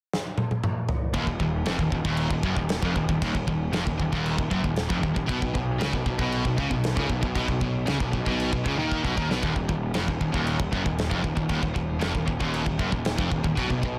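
The big rock drum kit stands out most, dark and smooth up front with a punchy kick and a medium-tuned snare, opening with a fill from 0.1 seconds. This epic, heavy metal excerpt, cut from a longer piece, sits in Eb minor at 116 BPM in a straight 4/4. At 1.1 seconds a growly fuzz electric bass joins the drums up front, while picked guitars carry the riff in the background: a biting, double-tracked overdriven one and a bright, scooped high-gain one with distortion, joined by a sludgy overdriven guitar. The harmony moves from Ebm to Badd9 and back to Ebm, with another drum fill at 8.9 seconds leading into the return. A small room reverb and a dense, heavily limited modern master give the track a compact, heavy weight.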